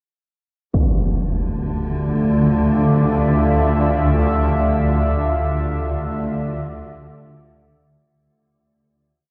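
Drenched in a cathedral-like reverb that lingers for seconds, this short dark ambient drone piece feels desolate and unsettling from its first moment. It opens at 0.7 seconds with a huge, dark impact that sounds distant and muffled. At that same moment, a very quiet bronze singing bowl begins ringing a single held high note through to the end, its metallic, slowly beating tone soft and meditative beneath the other layers. Up front, a swarming drone sits low in the register, tense and granular, its detuned sine voices evolving with slow attacks and long releases. Alongside it, a deep, full-bodied pad with a sub octave and gentle chorus carries moody, slowly shifting chords. The whole piece begins to fade out at 4.4 seconds and dissolves into its long reverb tail.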